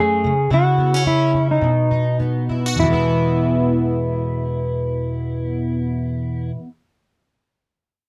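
Acoustic pop with a sunny, easy-going mood, moving at a relaxed 99-113 BPM in 4/4 with a light swing on the sixteenths, in E major. A double-tracked, fingerpicked plugged-in steel-string acoustic guitar carries the accompaniment, its jumbo body giving a full-bodied, dusky tone that sits up front. Over it, a clean lap steel guitar plays the melody with slide, its electric voice shadowed and close, both parts sounding together until about 6.5 seconds. The chords pass from C#m through B before settling on E at 2.8 seconds, as the opening slows down and gives way to a new section. Light reverb and a dark, warm production wrap this short fragment cut from a longer piece.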